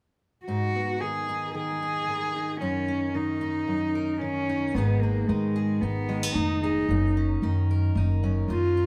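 Folk at 112 BPM in 4/4 with a yearning, stirring mood, this short cut from a longer piece opens at 0.5 s with a dark, bowed solo cello carrying the melody up front with vibrato, over a bright, fresh-stringed fingerpicked steel-string acoustic guitar alternating between Abm and Ebm7/Gb. At 4.7 s a pizzicato upright bass joins with a woody, thumpy low end. The trio plays live together in one room, framed by moderate studio reverb.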